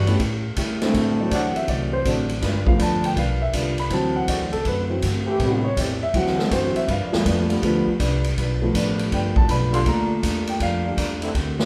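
Joyful and swinging, this short big band swing passage, cut from a longer piece, moves at 161 BPM in 4/4 with a swung eighth-note feel. A warm concert grand piano sits up front and takes a solo from 0.9 seconds to the close at 11.7 seconds, its deep bass and long sustain giving the lines an open, ringing quality. Underneath, the upright bass is played pizzicato on gut strings with a woody, thumpy tone, while a dark, clean, picked hollow-body archtop guitar adds amplified accompaniment. The acoustic drum kit is natural and up front, with a punchy kick, a medium-tuned snare, hi-hat and ride cymbal sounding in a big room. A mellow trombone section enters at 0.6 seconds and holds tight, soft-attack chords with light vibrato in the background. The harmony moves from A7 through D7 and G7 to Am7 and Gm7, all set in a lively large-studio reverb that gives the feel of a band playing live together.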